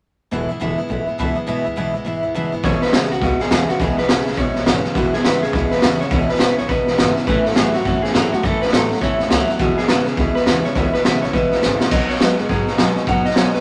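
Rockabilly at a rollicking, rowdy 207 BPM in E major, swung in 4/4 and cut from a longer piece. The opening bars set up a bright, full-bodied steel-string acoustic guitar up front, with audible finger squeak, a twangy clean electric riff sitting back in the mix, and a woody, thumpy upright bass plucked on gut strings beneath them. At 2.6 seconds a raw garage drum kit crashes in with a high-tuned snare, punchy kick, hi-hat and crash, its gritty, saturated sound pushed forward with a rolled-off top. The lead melody enters at the same moment on an electric guitar through a small old amp, slightly broken-up, compressed and lo-fi. The chords move from E to A at 7.3 seconds, back to E, then to B just after a drum fill at 11.6 seconds, all under a light reverb.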